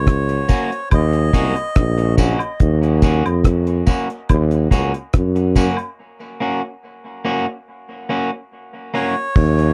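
A straight dub reggae groove in 4/4 rolls along on a dark, dry drum kit with a tight kick, crash, hi-hat and rim clicks, sitting up front beside a punchy tuba bass with vibrato, while a slightly broken-up picked electric guitar and a vintage, band-limited tambourine and woodblock in the background both trail dub echo, the percussion dropping out at 6.0 seconds as the break arrives, and a reedy, breathy melodica, also echoed, appears only at the very start and again from 9.0 seconds, giving this close, dry 1970s-style cut from a longer piece a deep, hypnotic pull.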